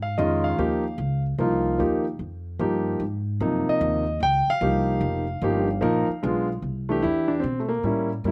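An intimate concert grand piano carries the melody up front, its smooth, vintage tone, deep bass and audible action noise giving this swinging, playful jazz waltz in 3/4 at 149 BPM a close, personal feel. A woody, thumpy pizzicato upright bass with steel strings plays the low line beneath it throughout, while the harmony moves from a rootless Bbm7 through Ab7 and Dbmaj7 to a Bdim7 before a new section opens on Cadd9 at 6.6 seconds. The sound is dry and open-air, recorded outdoors with little reverb, tuned slightly low to A4 = 439 Hz, and the clip is cut from a longer piece.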